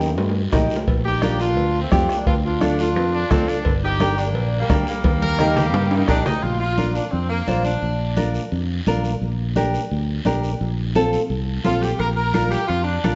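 Fingerpicked nylon-string guitar, a round, up-front fingered electric bass and a raspy guiro open this joyful, danceable cumbia in Bb major at 173 BPM, joined at once by very quiet ringing congas, a soft-beaten bombo that drops out at 6.4 s, and compressed, saturated timbales and cowbell in the background, while a tight, vibrato-rich jazz-style saxophone section carries the melody from 1.1 s and a brilliant-toned solo trumpet adds a second line from 3.1 s, all set in a dark, vinyl-crackled production with moderate recital-hall reverb.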